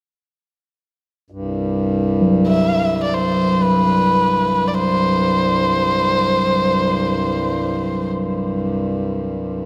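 A dark, nasal erhu sings a bowed melody with vibrato and portamento from 2.5 to 8.1 seconds, up front and trailed by tape echo, over a reedy, breathing harmonium drone low in the bass from 1.3 seconds and a ringing, metallic, airy singing bowl with slow beating struck with a suede striker from 2.2 seconds, all set in free time within a cathedral reverb that gives this calm, spacious piece of world meditation music, cut from a longer work, its sense of space.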